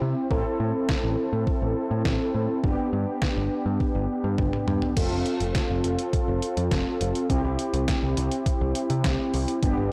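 Heard through a light reverb, the recording is blown-out and overdriven as this wistful yet upbeat synth-pop fragment moves at 103 BPM in C major over Am, G, F and C. Dark, warbling synth brass with a vintage, detuned sawtooth edge and chorus sustains the harmony beside a round, picked electric bass, both up front. From 0.3 seconds a detuned 8-bit drum machine, sampler-style and overdriven with a thumpy kick and fat snare, drives the groove and plays a fill at 4.4 seconds into the second half.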